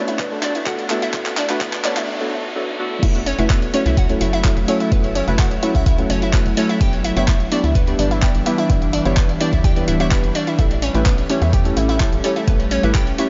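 Soaked in a huge, dreamy reverb, this bittersweet progressive house excerpt opens with a build-up in which a very quiet riser, a drum fill and a filter sweep on the deep, warbling chord stab lead through a brief break into the drop at 3.0 seconds. From the first moments, an up-front electronic kick and a tape-warm, small-room drum kit of crash cymbal, handclaps and hi-hat drive beneath a tight, punchy sequencer bass, a round, detuned analog pluck arpeggiating through cassette tape and diffuse delay, and an evolving, morphing wavetable pad holding sustained chords, with the pad, pluck, stab and bass all pumping under sidechain.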